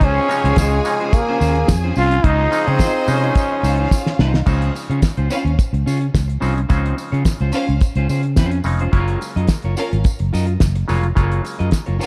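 A growling, raspy trombone leads this danceable, celebratory disco excerpt in Db major at 108 BPM, backed by punchy horn stabs, a rich bowed violin section, a hollow, nasal clav, a twangy, slightly broken-up electric guitar with spring reverb, a round, foam-muted fingered bass and a damped 70s drum kit with a fat snare and tight kick, while a jingly tambourine joins at 0.3 seconds. The trombone and horns stop at 4.2 seconds as a drum fill leads into a new section, where the violins, clav, guitar, bass, drums and tambourine carry on over Dbmaj7 and Gbmaj7 chords. The production is dark and warm, set in a small room.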